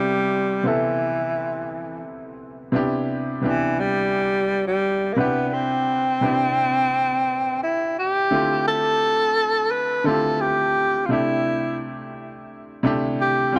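Smooth and lush, this soul piece at 86 BPM in C major features a breathy, whispered tenor saxophone with scooped notes, vibrato and tape echo up front over a bright, worn grand piano with short sustain, both heard throughout as the chords move from Am9/C and Cmaj7 to Dm11 at 8.3 s and C69, set in a dark production with light reverb.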